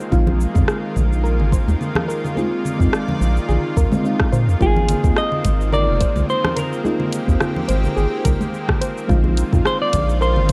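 This sunny, blissful sunset chillout excerpt opens at a relaxed 107 BPM with a swung sixteenth-note feel: a mellow FM electric piano treated with chorus, phaser and tape echo, a lush, detuned unison pad with chorus, a soft, round pluck playing arpeggios in the background, and a smooth R&B drum kit of congas, hi-hat, rim click and shaker. A deep, layered electronic kick and an up-front, evolving analog bass join almost immediately, with bright, thin-skinned acoustic congas tucked behind, as the harmony moves between Bb9sus4 and Ab69. At 4.6 seconds a clean, fingered semi-hollow electric guitar takes the melody up front with tape echo, all set in a dark, warm production with light reverb and digital ambience.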